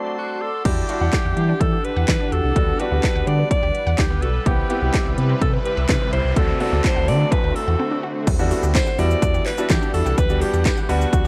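A bright concert grand piano and a shimmering, ethereal pad open this dance-pop excerpt on a brief break over a D7 chord, with an edgy alto saxophone entering at 0.2 seconds to carry the melody with vibrato and a forceful, pop-style punch. At 0.7 seconds the groove arrives: an overdriven house kit, up front, with a punchy kick, cracking snare, metallic hats, handclaps, shaker and crash, joined by a deep sine sub bass with an octave and a very quiet, detuned sawtooth pluck playing arpeggios. The piano, pad and bass all pump against the kick, while the pad sits in the background with a slow attack, octave-up shimmer and a granular, vintage character. A noise sweep runs in the background from 5.2 to 8.3 seconds, carrying into a short break, and a jingly tambourine appears briefly near the end. The mood is bittersweet yet confident, moving through Em9, Gmaj7/D and Cmaj7, and the whole mix carries little reverb and the worn, warbling pitch drift of old cassette tape.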